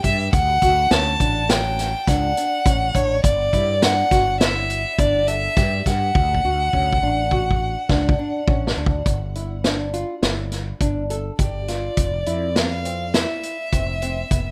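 This progressive instrumental piece for a small band moves in an uneven 5/4 with a straight feel, sounding bright and intricate. A single bowed violin carries the melody up front, its tone rich and smooth with steady vibrato and a touch of delay. Beneath it, a fingerpicked flamenco guitar spins warm arpeggios, also with delay and with audible finger squeak, while a mellow fretless electric bass adds a dark, round line colored by analog chorus. A vintage acoustic drum kit of hi-hat, kick and snare sits up front with a punchy kick, a medium-tuned snare and a rolled-off top, and it plays a fill from 6.1 to 9.1 seconds. The harmony shifts between D and G5 before a new section at 9.1 seconds brings in F5. Moderate reverb and a rough home demo mix give this fragment of a longer piece a close, unpolished character.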